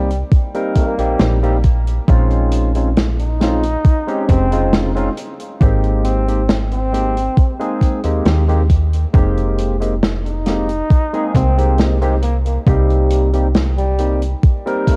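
Woozy and hazy, this vaporwave excerpt drifts over minor-seventh and extended chords, with a mellow, vintage flugelhorn carrying a jazz-style solo melody full of vibrato and scooped notes, trailed by tape echo. A bright, barky tine electric piano played through a combo amp shimmers with lush chorus and analog delay, while a snappy, metallic FM bass, a natural acoustic kit of hi-hat and medium-tuned snare, and a thumpy, overdriven electronic kick sit up front. The whole mix carries light reverb and small-room ambience, coloured by the warbly pitch drift of worn cassette tape.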